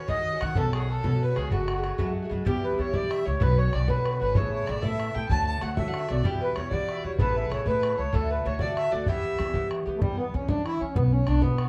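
Wild and spirited, this Celtic folk jig moves in 6/8 at 127 BPM in E dorian, a short cut from a longer piece. A reedy, round accordion carries the melody up close and dry, while a dark, woody fiddle with light vibrato plays a second line from further back. Picked double strings on a metallic Irish bouzouki supply accompaniment until 10.5 seconds, a bright pizzicato upright bass sits up front, and a boomy, open bodhran drives the beat, all within a small, reverberant room heard from a distance.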